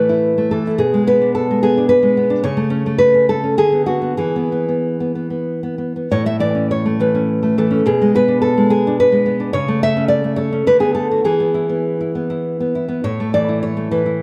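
A fingerpicked nylon-string guitar sits up front in this romantic solo classical piece, playing alone across the full 14.2 seconds of a passage cut from a longer work. The mood is sunny, and the playing moves in triple metre with a flexible, rubato feel. The guitar spans from A2 up to E5, and its harmony travels through a diminished chord, inversions and a dominant E before settling back home on the A chord. The same phrase is heard twice, the second statement beginning at 6.1 seconds and closing on an A5 at 13.0 seconds. A moderate recital-hall reverb surrounds the instrument, and the production leans dark and warm.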